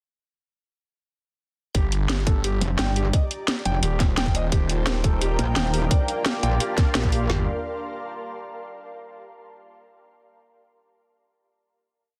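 Tense and mechanical, this short dark technical drum and bass piece drops in at 1.7 seconds with tight, woody-snared broken-beat drums layered with a cracking snare and tight technical hats, and a swirling phased saw bass chopping out phrases, joined at 2.6 seconds by a metallic wobble bass that answers it. A soft felt-muted upright piano cycles a 16-step arpeggio with dub echo and audible action noise, while an ethereal airy pad with tremolo and a bright, resonant sweeping pad join later, before a final chord rings from 7.3 seconds in a dense, heavily limited mix.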